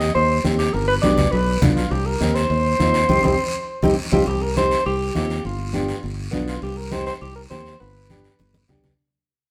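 A straight cumbia groove drives this fiery, fast Latin excerpt, with raspy close guiro up front and bright, low-tuned congas struck with hard hands sitting in the background while a growly, punchy fingered electric bass sits up front. Over a small, thumb-plucked nylon-string guitar with audible finger squeak, a breathy alto saxophone carries the solo melody in a mellow pop style, with light vibrato, scooped notes and a smooth top. The band plays live together in a stone room with wet reverb, hitting an accent at 3.1 seconds, fading out from 4.3 seconds, and closing with a drum fill at 8.4 seconds.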